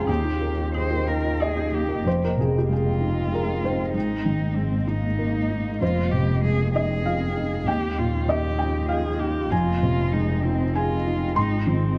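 Melancholic and longing, this neoclassical piece for piano and strings moves in a rubato 3/4 at 96 BPM in F minor, cut from a longer work. A felt-muted upright piano sits up front as the accompaniment, soft and intimate with audible action noise and short sustain, while a bowed double bass anchors the low end with vibrato, portamento and a soft attack. A single bowed cello carries the second line with a rich, focused tone and vibrato. Alongside them, a granular cloud pad holds sustained chords that feel blurred and evolving, with slow attack, long release and its own built-in reverb. A bright, woody marimba with hard mallets plays airy arpeggios in the background through tape echo, heard only from 0.1 to 1.8 seconds, before the harmony settles into alternating Fm7, Abadd9 and Ebadd9 chords from 2.1 seconds. The production is dark, set in a moderate scoring-stage reverb.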